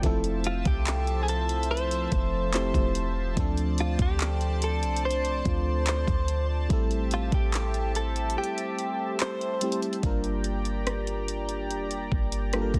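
A glassy, bell-like FM electric piano, a shimmering chorused pulse-width pad pumping with sidechain, a deep, boomy 808-style bass and a smooth, up-front R&B drum kit of knocking kick, hi-hat, handclaps and rim click open this longing, late-night contemporary R&B excerpt, with a clean, scooped, direct-recorded electric guitar carrying the melody through subtle chorus and tape echo from 0.5 s to 9.8 s, the kick dropping out between 8.4 s and 10.0 s before the harmony moves to Gm7, set in digital ambience and a dense, heavily limited modern master.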